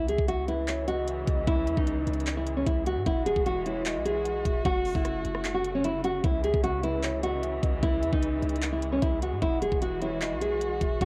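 A home cassette recording with light reverb frames this dark, menacing trap excerpt in C# minor, moving at 151 BPM with a half-time feel. Up front, a full-bodied, fingerpicked nylon-string guitar carries the melody through a low-pass filter. Behind it sit a veiled con sordino string section holding bowed chords, a hollow, woody clarinet-like synth lead warbling through chorus and tape echo, and a deep, boomy 808 bass, while the trap kit enters at 0.1 s with a knocking kick, crisp hats, handclaps and rim clicks colored by cassette tape.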